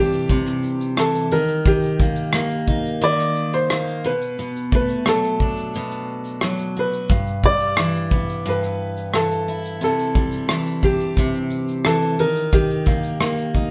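Acoustic pop with a carefree, easy-going mood, moving at 88 BPM in a straight 4/4, heard as a short excerpt from a longer piece. A clear upright piano carries the melody between G4 and D5, its tone woody and a little boxy. Beneath it, a picked steel-string acoustic guitar plays the accompaniment from G2 to G4, with the full body of a jumbo, audible finger squeak and an up-front place in the mix. An unplugged drum kit joins at 0.1 seconds with a punchy kick, rim clicks from bundle sticks and a shaker, sitting close and up front with a small-room character. The band plays live together in one room under moderate studio reverb, as the harmony moves through Cadd9, Eb, Bm7 and G6 before returning to Cadd9 and Eb.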